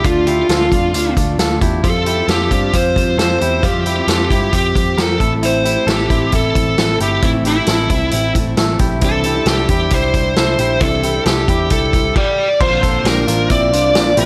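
Jangly indie pop at 134 BPM in F major with a youthful, bright mood, where an up-front, smooth overdriven lead guitar carries the melody over twangy, compressed clean electric guitar arpeggios, a full-bodied fingerpicked dreadnought acoustic guitar in the background (all three with slapback echo), a round, foam-muted vintage electric bass and a mid-forward vintage drum kit with a tight kick and dark cymbals, all moving from Dm through Fsus2, Am and Cadd9 to a Bbadd9 at 12.6 seconds in this short cut from a longer piece, with scoring stage reverb lending a big arena sound.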